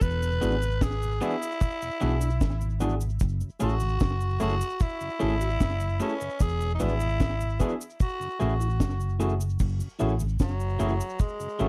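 A raspy, growling tenor saxophone with tape echo carries a bittersweet, longing melody from the first moment, over a round, hollow-body fingered bass, a dark, up-front reggae kit with a high-tuned snare, tight kick and slapback echo, and a faint cabasa, in a 75 BPM lovers rock groove in F# minor; a soft, flute-like tonewheel organ enters at 0.2 s, and a barky, lightly overdriven tine electric piano and slightly broken-up electric guitar stabs join at 0.4 s over E7 and F#m7 chords, all in a dry, close 1970s-style studio sound.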